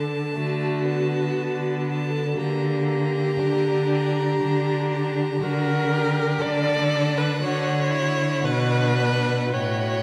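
Heard through a long, wet church reverb, this tender, lyrical slow romantic movement for string quartet in D major moves at 59 BPM with rubato: a warm viola and a clear, focused cello sit up front with bowed vibrato, a rich, smooth first violin sings the melody high above, and a second violin joins at 0.3 s with an even inner line.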